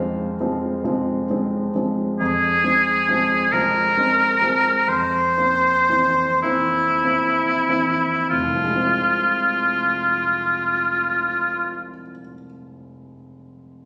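Captured on a phone in the room, the recording carries a moderate, roomy reverb with a 1.6-second tail, giving this short piece, cut from a longer work, an intimate glow. It is an elegiac, yearning romantic duo in F minor, moving slowly in 6/8 at about 29 to 46 BPM by the dotted quarter, with free rubato and a slowing of the pulse from 0.9 to 8.3 seconds. The grand piano plays the accompaniment throughout, clear and natural, with long sustain, audible action noise and a span from F1 up to F5. At 2.2 seconds the oboe enters up front with the melody, bright and singing in a classical style with light vibrato, staying between E4 and C5 until it finishes at 11.9 seconds. The harmony moves from F minor to C7 over an F bass and settles back on F minor, while the piano rings on alone until 13.9 seconds.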